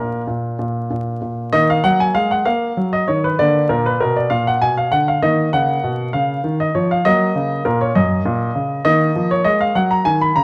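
Moving in a straight 6/8 at 66 dotted-quarter beats per minute, this brief classical-period sonatina excerpt in E-flat minor sets a dramatic, restless mood. A lone baby grand piano, polished and up front, ranges from Gb2 to Cb6, opening on a high Bb5 before settling at 1.5 seconds into a harmonic path of E-flat minor, B-flat and back. Close, detailed microphones capture the instrument within a moderate recital hall reverb, with a layer of vinyl crackle beneath.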